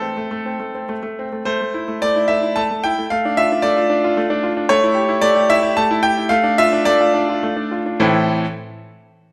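A brilliant, intimate concert grand piano carries this brief fragment of a classical-period sonatina alone from 0.0 to 8.4 seconds, its deep bass and audible action noise sitting up front. The mood is elegant and serious, moving in a flexible, rubato triple metre through minor harmonies that pass to a dominant seventh before settling home. A wet recital hall reverb surrounds the polished playing with a sense of space.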